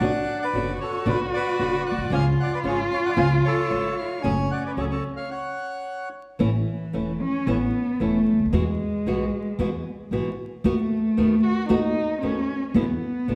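Melancholic and passionate, this excerpt of a tango moves at 113 BPM in 4/4 with a rubato feel, opening in F# harmonic minor before shifting to A major at 6.4 s. A reedy bandoneon, up front, carries the melody until 6.1 s. Beneath it, a dark, bowed cello plays a second line with vibrato and portamento, and a fingerpicked flamenco guitar gives acoustic accompaniment. A woody pizzicato upright bass with steel strings anchors the low end. After a stop between 5.3 and 6.4 s, the cello takes an expressive solo with a smooth top over chords moving from A through Eadd9 and B7/D# to E7. The sound sits in a wet recital-hall reverb, as if in a church or concert hall, with vinyl crackle.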